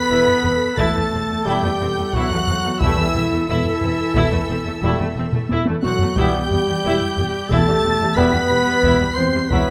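A dark French horn section holds sustained chords over a single A7(no3)/E harmony in this tense, ominous suspense film score excerpt at 89 BPM in 5/4, where rich, vibrato-laden violins carry a high melody and a second line, a mellow, roomy clarinet adds its own line, lush bowed violas accompany, focused cellos and background double basses anchor the bass, heavy-sticked taiko drums enter at 0.3 seconds with a fill at 5.3 seconds, and a soft-attack trombone section joins at 1.4 seconds, all in moderate concert hall reverb with close, detailed microphones.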